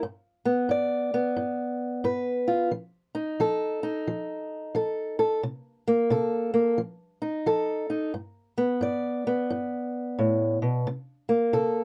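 A dry, close recording with a 1970s studio feel puts a lone fingerpicked, ladder-braced acoustic guitar up front, its old strings giving a dark, woody, boxy tone. This soulful, laid-back blues moves in a swung 4/4 through G, F7 and Am/C, returning to G at 8.1 seconds before landing on a C7 at 10.9 seconds. The guitar plays alone from the start until 11.8 seconds in this short cut from a longer piece.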